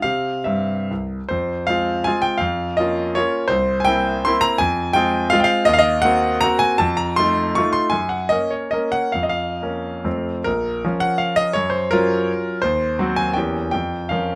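A solo concert grand piano opens this wistful, nostalgic romantic dance in 3/4, its dotted rhythms shaped by a pliant rubato that moves between 127 and 185 BPM. Starting in F minor and turning toward Bb minor from 5.7 seconds, the harmony passes through chords such as C7, F7, Gb and Gbmaj7 before settling on Bbm/F near the close at 14.4 seconds, in a fragment cut from a longer piece. The piano sounds intimate and up front, with a deep bass, audible action noise and a polished finish set in light reverb.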